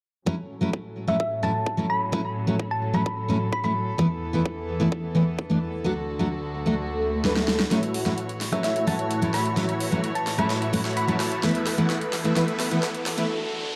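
Opening at 0.3 seconds with an up-front, full-bodied picked steel-string acoustic guitar, distant earthy chamber strings under a filter sweep, and a punchy layered kick, this anthemic, triumphant festival progressive house excerpt in A major at 129 BPM adds a round, tine-like thumb-piano-style synth pluck melody with chorus and tape echo, drops the kick at 5.9 seconds, then builds from 7.7 seconds as lush, bright detuned supersaw chords move through a filter sweep over a big-room kit with a huge snare and metallic hats, all set in a dark concert-hall reverb before a brief break.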